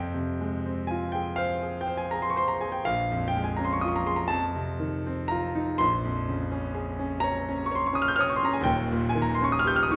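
A romantic classical nocturne for solo piano in F minor, this yearning, wistful passage unfolds at a slow 41 beats per minute in 12/8, shaped by free rubato. The concert grand sits up front with a clear, smooth tone, vintage character and deep bass, ranging from Eb1 to G6 as it moves through Fm, Bbm7, F7 and Eb7 harmonies. A wet recital-hall reverb with a 1.7-second decay surrounds the playing in this short fragment cut from a longer piece.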